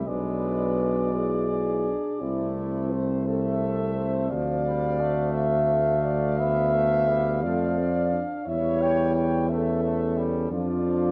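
A moderate scoring-stage reverb surrounds this yearning, melancholic hymn-like classical excerpt for brass band in A minor, moving in a rubato 12/8 at 58 BPM, where a dark, distant cornet with light vibrato sings the melody over a tight, mellow French horn section carrying a second line, a brilliant trombone and a background euphonium in accompaniment, and an up-front tuba anchoring the bass, with the harmony passing through E7/B, Am/C and Dm before reaching A7/E at 8.5 seconds.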